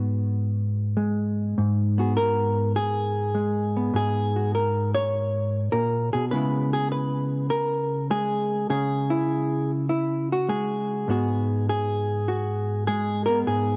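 A swung eighth-note feel at 101 BPM in 4/4 carries this short solo jazz piece in G# minor, cut from a longer performance and lasting just under 14 seconds. The mood is cool and smoky, with a lone hollow-body electric guitar playing clean and fingered, sitting up front in the mix. Its tone is dark and compressed, spanning from G#2 up to C#5, and it carries the grainy character of cassette tape. The harmony moves from G#m7 to C#m7 at 6.3 seconds and returns to G#m7 at 11.1 seconds. Light reverb surrounds the guitar, and the home cassette recording rolls off the top end, leaving a muted, intimate sound.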